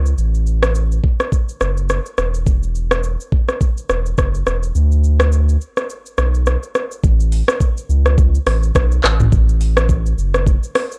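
A dry, gritty recording with cassette-tape grain, transformer saturation and a faint mains hum carries this joyful, sunny afrobeats fragment at 105 BPM in A major, where a round, dark analog bass with a sine-like tone holds the deep low end up front beside an electronic afro-pop kit of knocking kick, metallic hi-hat, handclaps, rim click, shaker and toms, swung on the sixteenths and re-recorded in a large room, with the kick dropping out from 4.8 to 7.0 seconds before a new section begins.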